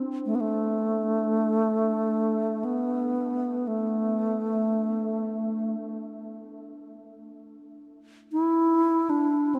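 Meditative and spacious, this short world-music passage floats in free time, cut from a longer piece. A bronze singing bowl opens at 0.0 seconds, struck with a suede striker and sitting in the background, its metallic ring carrying a slow beating and a vintage, band-limited tone before it fades from view at 4.1 seconds. Almost at once, at 0.3 seconds, a bass flute takes the melody, close-miked and up front, its airy, bright voice shaped by tongued notes and vibrato. A tape echo trails the flute's phrases as it moves within its low register until the close at 9.6 seconds. The whole passage is bathed in a huge, wet ambient reverb with a long decay of 6.6 seconds, lending the meditation an open, spacious depth.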